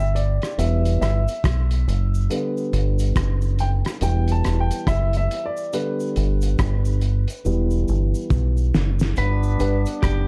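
A dark, mellow upright piano opens this laid-back, sunny roots reggae excerpt with woody, long-sustaining stabs over a deep dub fingered electric bass that sits round and up front in G major at 70 BPM, with a swung sixteenth-note feel. Moments later a cloth-damped, thuddy drum kit arrives with hi-hat, tight kick, rim click and a fat snare, its muffled, gritty, rolled-off sound giving the groove a lo-fi character, while a cabasa rattles distantly in the background. The chords sway between G and E minor as the piano carries the spotlight, and a drum fill from 7.5 seconds leads into a new section. At 9.2 seconds a clean, picked electric guitar takes up a short melody, joined by a brilliant, tight trombone section playing a second line with light vibrato. The small-room production stays dark and warm throughout.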